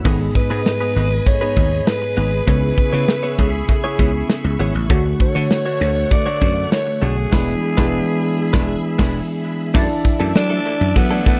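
A straight 4/4 groove at 99 BPM drives this moody, urgent 1980s-style pop excerpt, with a punchy, up-front acoustic drum kit of kick, snare, hi-hat, crash and tambourine, a faint metallic cowbell and a growly thumbed slap bass beneath a mellow tine electric piano, vintage string-machine violas with ensemble chorus, and a clean, direct electric guitar riff bathed in lush chorus and tape echo, while a breathy, raspy alto saxophone carries the melody with vibrato and scooped notes over chords moving from G#m through E7 to a band accent at 7.3 seconds, before a funky sawtooth polysynth comp adds stabs from 9.7 seconds on a Dsus2, captured in a dry, close 1970s-style studio sound with light reverb.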